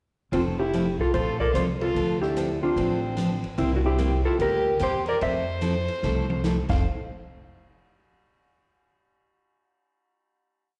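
Heard through a live venue's PA with recital-hall reverb and a light small-room ambience, this short, playful western swing piece opens with a dark, clean hollow-body electric guitar carrying an up-front motif-based melody with slapback echo, shadowed by a biting, lightly vibrato fiddle harmony line mostly in thirds. A bright dreadnought acoustic guitar picks a four-to-the-bar rhythm, a woody, thumpy upright bass plays two-beat root and fifth with walk-ups, and a big-band drum kit keeps a ride cymbal pattern with a punchy kick over a Fmaj7, Dm7, C7 progression. A drum fill at 6.0 seconds leads to a final hit at 6.8 seconds.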